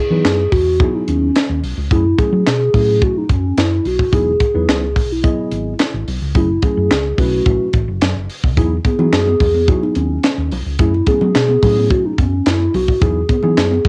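A hollow, woody clarinet-like synth lead with vibrato and plate reverb opens this smooth, feel-good early-eighties boogie funk excerpt in E major at 108 BPM, joined almost at once by a worn, slightly out-of-tune tine electric piano, a round, punchy hollow-body bass and a tight, up-front funk kit with handclaps and a high-tuned snare, all circling Emaj9 and F#m9 on a home cassette recording, before bright, high-tuned congas slip in from the background at 8.6 seconds.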